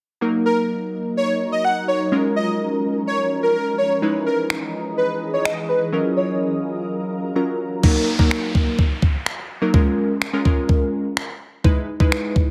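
A crisp 8-bit drum machine with a thumpy kick, finger snaps and crash cymbal drives this driving, bittersweet dance-pop excerpt at 126 BPM in Eb minor, arriving up front at 4.5 s with a sampler-style, tape-tinged punch and the sound of a large room. Glassy digital keys with a filter sweep and quick, decaying notes carry the accompaniment from the start, while an airy, dreamy lead sings a mellow melody with vibrato and tape echo over a dark, shimmering pad of detuned unison chords; both the lead and the pad pump against a sidechain. The keys add a short fill at 7.1 s, and after the lead and pad drop away an electronic downlifter appears as the chords return to Ebm, Db6 and Emaj7.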